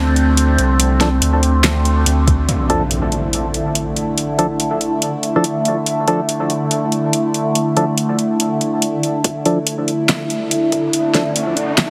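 A resonant drone of sawtooth and sine tones, its overtones shifting under chorus, phaser and its own reverb, sits up front through the whole of this cut from a longer deep dubstep piece, holding sustained chords in a cavernous, meditative half-time groove with a swung feel. A thick, saturated sub bass with a fast attack carries the opening drop until 2.5 seconds, when an electronic impact lands and the chords settle on D minor. A deep house drum kit of handclaps, metallic hi-hats and a fat snare stays prominent throughout, and a deep, tape-warm electronic kick appears briefly near 2.3 seconds before returning at 9.2 seconds for the build-up. Hollow, organ-like stabs with a mellow, decaying tone and a noise layer are coloured by chorus and dub echo, and they take a filter sweep during the build-up as a riser climbs over the final stretch. The mix has light reverb but a heavily compressed, radio-like sound.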